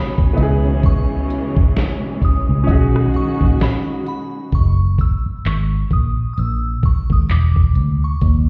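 Heard muffled, as if through a wall, with a stony room tint and a dry overall feel, this short excerpt of contemporary R&B carries a late-night, longing mood at a slow 65 BPM in 4/4 with a gentle swing on the sixteenths. A glassy FM synth bell carries the melody high up, its bright, fast-attack notes decaying into long tails coloured by chorus, phaser and tape echo. Beneath it, a clear, natural grand piano and a lush, distant string section, bowed with vibrato and portamento and pumping from sidechain compression, hold the opening chords before both fall away at 4.5 seconds. The smooth, electronic drum kit, up front and tape-warm, enters at 0.2 seconds with a knocking kick, deep snare, smooth hi-hats, rim clicks and handclaps. A dark, round, foam-muted electric bass, amped and equally forward, joins on the low end at 0.4 seconds, and the harmony moves from C#m9 and B6 to F#add9 and Dsus2/E.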